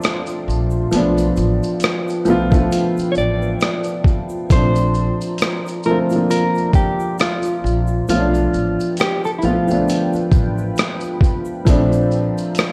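Lo-fi hip hop with a hazy, melancholic mood, cut from a longer piece, where a dark upright piano with audible action noise and a cassette tape effect carries the chords beneath a deep, detuned ambient pad washed in chorus and reverb. A compressed, gritty boom bap kit with a thumpy kick sits up front beside a faint, grainy tube shaker, and a woody pizzicato upright bass enters at 0.5 seconds. From 3.1 to 10.7 seconds a mellow, clean electric guitar carries the melody through phaser and tape echo, the whole mix set in a moderate scoring-stage reverb with a cassette tape finish.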